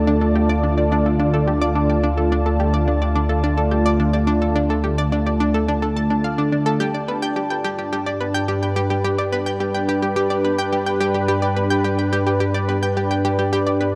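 A straight 4/4 pulse at 107 BPM drives this hypnotic, cosmic piece of sequencer-driven space music in D dorian, heard as a 14-second cut from a longer work. An up-front analog pluck carries the riff from D4 to A5, its round sawtooth and square tone with a sub octave sounding bright, fast and short-decaying through chorus and tape echo. Alongside it, an up-front lush unison pad holds sustained chords in thick, detuned layers that warble with a vintage character, while an analog drone anchors the bass between D2 and G2 with a mellow, evolving, wave-folded tone. A very quiet bubbling texture of resonant, randomly stepped filter movement sits on D5 with its own built-in reverb. The harmony moves from Dm to G at 6.8 seconds, and a wet plate reverb with a 3.4-second tail wraps the dark production in deep space.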